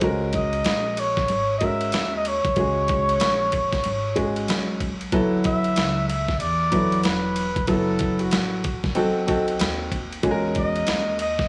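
A lightly reverberant studio sound frames this smoky, nocturnal jazz-hop piece, heard as a cut from a longer work, at 94 BPM in 4/4 with a 63% swing on the sixteenths. Gritty, compressed, pitched-down boom bap drums with a thumpy kick sit up front beside a dark, vintage upright piano, while a woody pizzicato upright bass holds the low end. From 0.3 s a bucket-muted trumpet carries the solo melody, veiled and breathy with light vibrato, scooped notes and an analog delay, sounding distant yet intimate as the harmony moves through Dmaj9, F#m7, B7b9 and Emaj7 from 5.1 s.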